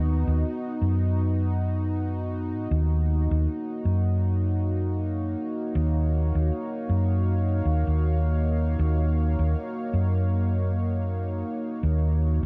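A round, hollow-body electric bass sits up front in the low register while a smooth analog pad with chorus, slow attack and long release holds sustained chords above it, moving from B/D# to Ebm9 at 2.7 seconds. This spacious, meditative ambient dub in Eb minor moves at 79 BPM in 4/4 with a light swing on the sixteenths. The production is dark and warm with little reverb, and this excerpt is cut from a longer piece.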